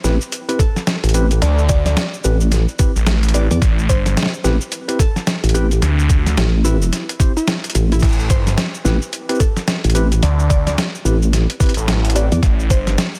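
Dry, dense and heavily limited, this funky, playful glitch hop fragment swings over a single minor-seventh chord, with a gritty, pitched-down electronic kick up front beside a sampler-style drum kit of crash, hi-hat, shaker and snare, a nasal, wobbling vowel-sweep bass with chorus, a swirling, thick phased saw bass that enters at 1.4 seconds with overdrive, clean tine electric piano stabs through a combo amp carrying tremolo, 12-bit grit, sidechain pumping and tape echo, and a woody wave-folded pluck melody tucked in the background from 0.6 seconds.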